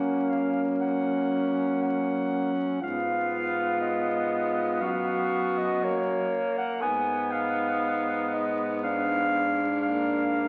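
A slow, rubato pulse at 60 BPM in 4/4 carries this elegiac, yearning classical piece for single-reed quartet, cut from a longer work and moving through Gb, Fdim/Ab, Abm and Bb7/Ab harmonies. A mellow clarinet sings the melody up front, joined by a clear, soft-attacked alto saxophone close at hand on the second line, a distant, roomy tenor saxophone with light vibrato in the accompaniment, and a close-miked baritone saxophone, also with vibrato, holding the bass. The quartet sits in a reverberant recital hall and comes through the crackle of a very old 78 rpm record.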